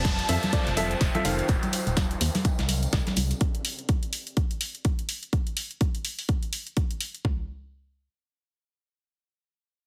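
Euphoric and joyful, this piano house excerpt moves at 125 BPM in F major with a swung 16th feel, driven by a punchy house kick and toms, layered electronic hi-hats, and a gritty, pitched-up breakbeat kit whose snare sits in the background alongside hard-handed congas and tambourine. A hollow, dark organ-like FM bass pumps up front beneath a brief, focused bowed string section with vibrato, while a clear, woody, slightly detuned upright piano riff enters at 0.3 s through tape echo and a low-pass filter. A warbling, nostalgic lo-fi pad with chorus fades out by 3.4 s beside an electronic downlifter, and the mix carries a heavily compressed radio sound with light digital ambience.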